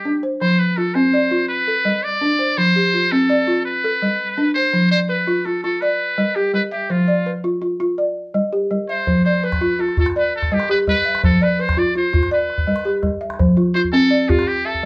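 A flowing 12/8 lilt at 111 dotted-quarter beats per minute carries this excerpt of West African string and xylophone music in F Lydian, its harmony rocking between F and G chords. Up front, the balafon lays out woody, round arpeggios struck with soft rubber mallets, while a buzzy, brilliant trumpet in a metal mute sings a jazz-style melody with vibrato and scooped notes. A small calabash joins at 9.1 seconds, the muted trumpet takes a brief solo from 13.4 seconds, and the whole band plays live together in a snug, reverberant room.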